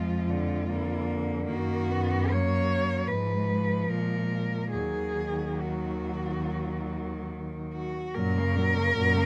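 Elegiac and yearning, this lyrical classical excerpt for cello ensemble unfolds in Eb minor at a rubato 68-80 BPM in 4/4. A warm, expressive bowed solo cello carries the melody with vibrato, a soft attack and portamento, over a rich, smooth-topped second line and accompaniment from two more cellos and a focused, up-front bass cello, all captured with close, detailed microphones and light reverb as the harmony turns to F# at 8.2 seconds.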